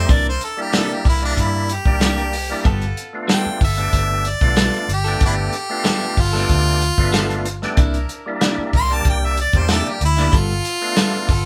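A clear harmonica leads throughout this swaggering, rollicking straight-eighth soul blues at 94 BPM, soloing up front with tongue slaps and scooped notes in a jazz style over chords moving between C9 and G9. Beneath it, a thick, lightly overdriven tonewheel organ with key click and fast rotary speaker joins clean, compressed electric guitar stabs, a round, foam-muted fingered bass and a small-room soul drum kit with a tight kick and rolled-off top. A bright horn section holds very quiet sustained chords with light vibrato, the whole band sounding live in one room with light reverb in this short cut from a longer piece.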